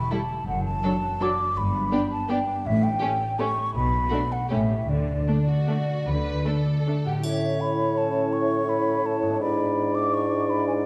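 A rubato three-four sway carries this elegant, sweeping orchestral ballroom waltz fragment, where an airy, hollow concert flute and ringing harp arpeggios float over lush violin sections carrying the melody and a rich second line, with focused violas and cellos and close, expressive double basses beneath, until the strings give way at 7.2 s to a soft-attack clarinet, an up-front mellow bassoon, sustained French horn chords and a brief, dry triangle, within a dark scoring-stage reverb.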